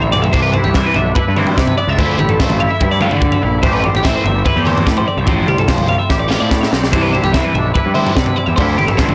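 A crisp, up-front fusion drum kit with bright cymbals, a high-tuned snare and a punchy kick drives this bright, intricate math rock and midwest emo excerpt at 146 BPM in C major, opening with a fill at 0.0 seconds and adding another at 6.1 seconds. A growly, fuzz-laden picked bass sits up front beneath a bright twelve-string electric guitar that spins compressed arpeggios through tape echo. A scooped, fingered twangy guitar with analog chorus and a double-tracked overdriven riff guitar with phaser fill out the Cmaj9, Dm9, Am7 and Fmaj7/A changes, all under light reverb with a blown-out, overdriven sound.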